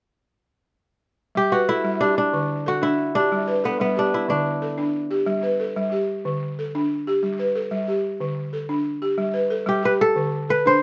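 Set in a straight 12/8 lilt at 123 BPM counted in dotted quarters, this short excerpt of West African string and xylophone music in G major has a warm, hypnotic pull as its harmony rocks between G and D5. A woody, buzzing balafon struck with rubber mallets plays arpeggios up front throughout, while a crisp, ringing fingerpicked kora carries the melody from 1.4 to 6.0 seconds and returns at 9.7 seconds. Light reverb gives the close, acoustic sound a touch of air.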